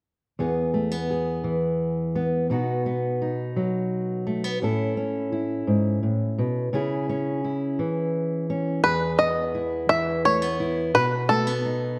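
A twangy, percussive bluegrass banjo played with fingerpicks enters up front at 8.8 seconds to carry the melody over a dark, fingerpicked steel-string acoustic guitar that has been cycling through E, B, A and C#m since 0.4 seconds, giving this hopeful, warm folk passage in E major a slow 57 BPM lilt in 6/8, set in a moderate scoring-stage reverb.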